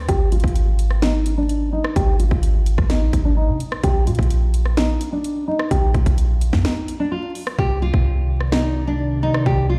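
A deep, boomy, clean 808-style bass anchors this hard-hitting, dark half-time trap excerpt at 128 BPM, underpinning a fingerpicked nylon-string guitar melody with audible finger squeak, a filter sweep and delay, alongside an up-front electronic trap kit with a hard-clipped kick, sharp snare and metallic hats, all set amid vinyl crackle and large studio reverb; after a break at 6.6 seconds the hi-hats drop out at 7.6 seconds as a warbling, nostalgic lo-fi pad with chorus enters on a Cmadd9 chord.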